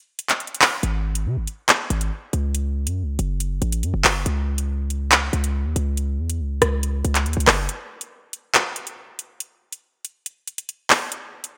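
A menacing, tense drill groove at 140 BPM in 4/4 with a half-time feel, cut from a longer piece. An electronic, produced drum kit comes in at 0.2 seconds, placing handclaps, rim clicks and metallic hi-hats up front, with a tape-warm edge to the kit. At 0.8 seconds a hard-hitting 808-style bass joins, a punchy, heavy sine tone with a noise layer, a fast attack and a decaying tail, ranging from F#1 to B#2. The bass drops out at 7.7 seconds, leaving the drums to carry a break until 11.5 seconds. The whole has a bright 1980s-style digital sheen and light reverb.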